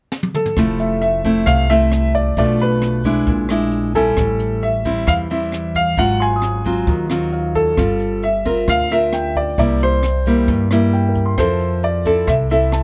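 A straight 4/4 bossa nova groove at 133 BPM in F major opens with a brushed drum fill at 0.1 s, the dark kit's boomy kick and high-tuned snare setting up a breezy, sophisticated excerpt in which a smooth, vintage grand piano carries the melody up front from 0.4 s, a fingerpicked nylon-string guitar with audible finger squeak and a woody pizzicato upright bass enter at 0.6 s, and a polished second grand piano adds accompaniment in the background, the sound close and detailed with little reverb.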